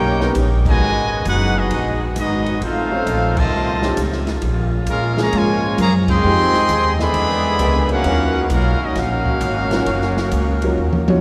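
Swung eighths drive this dramatic, brassy big band swing excerpt in minor, where a clear, up-front trumpet section carries the melody with light vibrato over a brilliant, loosely played trombone section on the second line and a very quiet saxophone section holding sustained chords. A woody, growly upright bass sits up front, while a dark, mellow grand piano comps in the background and a boomy, rolled-off jazz kit with dark cymbals joins at 0.2 seconds. The whole band hits accents at 0.6, 3.3 and 6.0 seconds before a closing drum fill, all bathed in a long cathedral reverb with a faint mains hum underneath.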